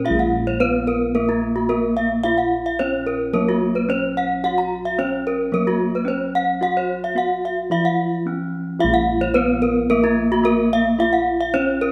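Balinese gamelan in Bb pelog at 110 BPM, this brilliant, ceremonial excerpt from a longer piece was played live in a reverberant stone room. A ringing, mid-forward bronze metallophone struck with a horn mallet carries the melody, its paired tuning giving shimmering beats, while round, warm bossed gongs hold the bass and a second, close-miked metallophone spins bright arpeggios that sound dry, full and up front. A short break falls between 8.0 and 8.8 seconds.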